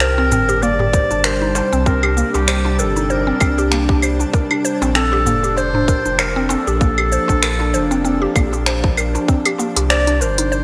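A clear, classical-style clarinet melody opens this meditative, earthy organic downtempo piece at 97 BPM with a swung 16th-note feel, joined from the start by a woody, warbling FM mallet pluck playing arpeggios, a round sine sub bass and a layered deep house kit of claves, finger snaps, smooth hi-hats and shaker, while a sparkling granular texture shimmers in the background, a crisp metal-shell darbuka sits further back, a tense, detuned string-like drone with vibrato and sidechain pumping enters at 0.5 seconds over chords moving from C7(no3) to Bbmaj7, and a tight, overdriven electronic kick arrives at 0.9 seconds, all bathed in a lush hall reverb and a bright 1980s-style digital sheen.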